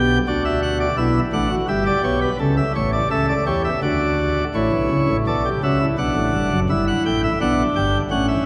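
A chamber organ's principal chorus opens this solemn, serious passage, cut from a longer baroque-style fugue in three voices. The organ plays alone at 84 BPM in a straight 3/4, spanning a range from F#1 up to G5. Its full chamber voicing sits up front, with a distinct chiff at the start of each pipe's speech. A wet cathedral reverb with a 5.3-second decay surrounds the sound, and a faint mains hum lies beneath it. The harmony moves through D, Em/G and A before returning to D, then turns toward F#m7/A at 4.5 seconds, Bm and Em7/G in the second half, and the passage breaks off at 8.5 seconds.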